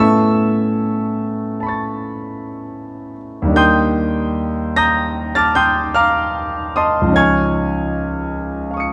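In a rubato 9/8 lilt at 50 BPM on the dotted quarter, this luminous, hazy fragment of impressionist classical solo piano lets an up-front, clear concert grand with deep bass and long sustain drift through Aadd9, D#maj7 and C#add9 across nearly nine seconds, spanning C#2 to C#7 within a dark production and the moderate bloom of a scoring-stage reverb.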